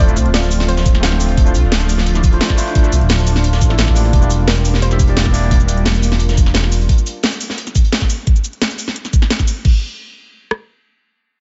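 Liquid drum and bass at 174 BPM, dreamy and soulful, cut from a longer piece and built over Dm9 moving to Em7b5 at 4.1 seconds. A dark, sawtooth-and-square synth bass sits up front beneath a detuned, chorused analog pad, while a barky, overdriven tine electric piano with phaser and ambient delay carries the accompaniment and a soft, round pluck drifts in the background with lush chorus. Two layered electronic kits supply a knocking kick with rim click, a cracking snare, metallic hats, cabasa and crash, and a gritty, saturated breakbeat kit with a rolled-off top sits behind them until 8.0 seconds, the whole mix set in light reverb.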